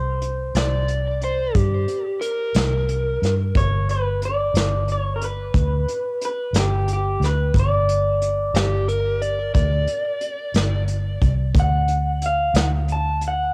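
A home cassette recording gives this slow blues a hazy, lo-fi character and a soft studio ambience, with every part sitting up front. At 60 BPM in dotted quarters, the 12/8 pulse moves with a swaggering, laid-back ease, tuned slightly flat to A4 = 437 Hz and moving from a C5 chord to G and then to D at 11.5 seconds in this cut from a longer piece. A picked electric guitar through a small old amp carries the melody between G4 and A5, its tone slightly broken-up and compressed, touched by subtle chorus and tape grain. Beneath it, a vintage muted fingered electric bass gives a round, foam-muted low end from G1 to G2, while a brushed drum kit supplies punchy kick, medium-tuned snare and hi-hat with a rolled-off top. An overdriven slide guitar enters at 0.6 seconds as a second line, dark and fingered, drifting through tape echo between G4 and D5 before stopping at 10.8 seconds.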